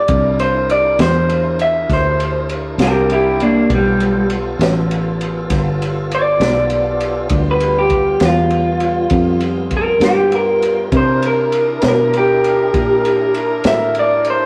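A clean but slightly broken-up electric guitar solo, picked and compressed through a small old amp with spring reverb, sits up front over full, clean tonewheel organ chords turning on a slow rotary speaker with chorus vibrato, a round, foam-muted fingered bass and a crunchy breakbeat kit with a punchy kick, dark cymbals and a rolled-off top. This gritty, rollicking slow blues moves at 66 BPM in 12/8, shifting from C9 to G9 at 3.7 seconds and back to C9 at 10.9 seconds, when a distant, roomy jazz-style horn section joins with sustained chords. The rough rehearsal-room recording carries moderate reverb, and the passage is cut from a longer piece.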